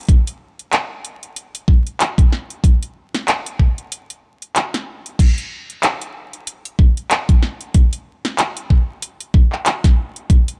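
Glitch hop at 94 BPM in 4/4 with a 16th-note swing, this swaggering, funky excerpt from a longer piece rides on an up-front electronic kick drum with a knocking, tape-warm punch, layered and re-recorded in a small room. Alongside it, a drum and bass drum kit brings a cracking snare, metallic hi-hats, handclaps and crash cymbal, with a break from 3.9 to 5.2 seconds. The dry mix carries a bed of vinyl crackle.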